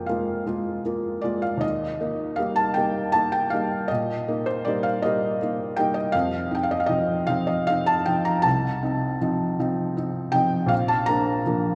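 Serene and tender, this brief excerpt from a romantic classical nocturne features a solo felt-muted upright piano, soft, mellow and intimate with audible action noise, sitting up front in wet church reverb as it moves at a rubato 53 BPM in 12/8 through Bb7, Eb, F7 and back to Bb by 10.7 seconds, spanning Bb1 to Bb5.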